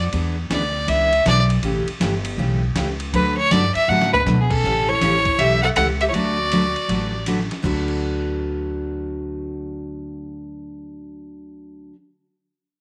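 Playful and down-home, this western swing excerpt in D major moves at 160 BPM with a swung 4/4 feel, as a clear, intense fiddle takes the lead with light vibrato, a breathy clarinet adds a mellow second line in the background from 4.4 to 7.3 seconds, a bright picked dreadnought acoustic guitar and a woody, growly pizzicato upright bass sit up front, and a gritty, compressed sampler-style drum kit with a thumpy kick drops a fill at 3.9 seconds, all in a small room with light reverb.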